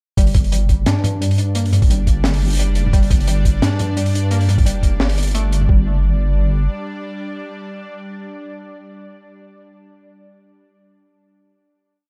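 Heavy and tense, this short half-time drum and bass piece in G minor at 174 BPM opens at 0.2 seconds on a drop where a gritty, thumpy pitched-down electronic kick and a dark, crunchy breakbeat kit with a high-tuned snare drive a sparse swung beat under a deep, saturated wobble bass with chorus and a warbly, lo-fi pluck repeating a 16-step arpeggio through chorus and analog delay, while a string-like, detuned drone with vibrato and built-in reverb pumps beneath and outlasts the other parts, carrying a final chord from 5.7 seconds in an echo-heavy small-room mix.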